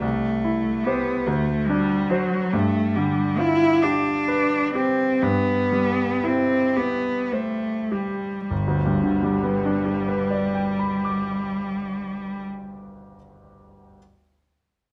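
Set in 6/8 at a slow 32-49 BPM counted in dotted quarters, this romantic classical duo moves with a rubato feel and slows down from 1.3 to 8.5 seconds. The mood is serene and lyrical, rooted in G major and cut from a longer piece. A single bowed cello carries the melody from F#3 to E4, its tone clear, smooth and even with vibrato, sitting up front yet with a slightly distant quality, and it stops at 12.5 seconds. A grand piano supplies the accompaniment across a broad span from G1 to D6, bright and brilliant with a natural, short sustain, playing on alone until 14.0 seconds. The harmony passes from C through D7 and G7 to C/G before settling on G as a second section begins at 8.5 seconds. Close, detailed microphones capture the pair within the moderate reverb of a recital hall.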